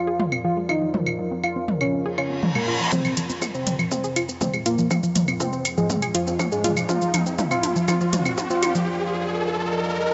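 Overdriven deep house drums with metallic hats sit up front in this dramatic, melancholic melodic techno piece, joined by a round sawtooth analog pluck arpeggio with chorus and tape echo, a thick detuned unison lead carrying the melody through delay, and a deep, moody ambient pad with vintage 12-bit sampler grit under a filter sweep, those three pumping to the sidechain, while a reverse cymbal at 2.3 s leads into a build-up where a punchy, high-passed electronic kick enters at 2.9 s alongside a drum fill, a riser and a filter sweep on the pluck, all set in a huge ambient reverb.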